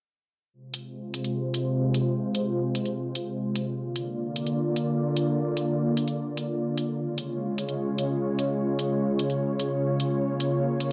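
Aggressive and chaotic in mood, this short cut from a longer heavy wobble dubstep piece moves at 149 BPM in 4/4 with a half-time feel. A lush, detuned supersaw pad sits up front from 0.7 seconds, holding sustained chords between C3 and D5 with a slow attack and long release, shaped by a low-pass filter and a filter sweep that runs across the whole passage. The chords move from F minor to B-flat, then D-flat, and settle on B-flat minor at 10.2 seconds. An electronic hi-hat enters alongside it, layered and overdriven, placed up front with a touch of studio ambience. A moderate hall reverb with a 2.1-second decay gives the dark, warm production a sense of depth.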